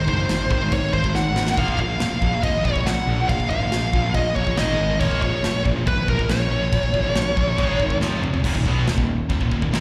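Heard as a live gig through a venue PA with small-room ambience and recital-hall reverb, this dark, heavy metal fragment puts a dark, distorted lead guitar with slapback and tape echo up front until 8.0 s, over a bright high-gain riff guitar in the background, a very quiet second distorted riff guitar, a growly, punchy fuzz bass, and a polished, airy acoustic drum kit with bright cymbals and a tight kick that fills at 1.1 s and again at 8.0 s before the shift to an Ebm section.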